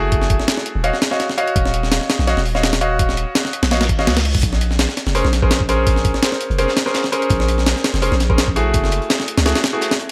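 A gritty, pitched-up, tape-warm jungle sampler kit with a thumpy kick and medium-tuned snare drives this dark, nostalgic drum and bass excerpt on a lightly swung sixteenth-note feel, while a deep, mellow 808-style bass holds long decaying sine notes underneath. Up front, a brilliant concert grand plays minor-ninth chord stabs trailed by dub echo, moving from Gbm9 through Ebm9 to Bbm9. A very quiet electronic reverse cymbal at 3.9 seconds leads into a faint, crunchy breakbeat kit with a rolled-off top that joins at 4.4 seconds, all set in light reverb and studio ambience.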